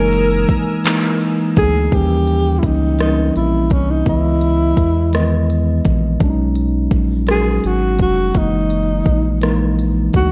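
A breathy tenor saxophone carries the melody up front, its dark, whispered subtone tone shaded with vibrato, scooped notes and a slapback echo that gives it an intimate, jazz-style voice. This short slow R&B excerpt in a straight six-eight feel sits in a dark, close production with little reverb, and the mood is warm and intimate throughout. A mellow tine electric piano plays clean, direct accompaniment, while a round analog bass holds down the low end with a deep, sustained tone. A smooth R&B drum kit enters at 0.1 seconds with a soft kick, smooth hi-hat, rim click and handclaps, its electronic sound re-recorded in a large room. A lush, warbling unison pad with chorus adds thick, bright sustained chords only in the opening, dropping out at 1.9 seconds as the harmony moves from F#13 through D#7b9, C#m9 and B69 before returning to F#13.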